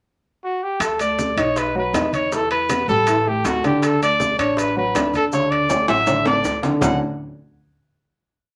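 Afro-Cuban jazz at a brisk 160 BPM in 4/4, sunny and danceable, built as a short complete piece in D major. A trumpet carries the motif-based melody up front, its tone warm and present with vibrato and scooped notes, entering on a pickup at 0.4 s before the band arrives at 0.8 s. Underneath, a woody, dark upright bass plays a thumpy pizzicato tumbao that anticipates the chords, while a slightly detuned vintage upright piano lays down a smooth montuno in octaves from 1.0 s. The percussion sits in layers: ringing metal-shell timbales with shell pattern and bell are the most prominent, with tight, high-tuned bongos in steady eighths alongside a hand bell, bright low-tuned congas with slaps and open strokes, and grainy maracas kept in the background. A drum fill from 5.7 s leads into a closing Dmaj9 chord at 6.8 s, and the whole band rings out in a wet club reverb.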